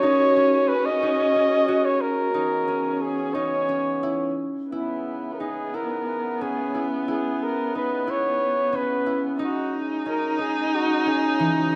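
Set in a straight 7/8 at 180 BPM counted in eighths, this restless, pensive piece of contemporary chamber music in C# dorian is cut from a longer work. A warm flugelhorn leads up front with light vibrato, scooped notes and a jazz-tinged solo line, while a single woody, bowed viola carries a second line beneath it and a dark, distant woodwind section holds sustained chords in a classical style. A fingerpicked concert harp rings out arpeggios through a moderate recital hall reverb as the harmony moves from D#m7 to C#m7 at 2.3 s and on to G#7sus4 at 9.4 s.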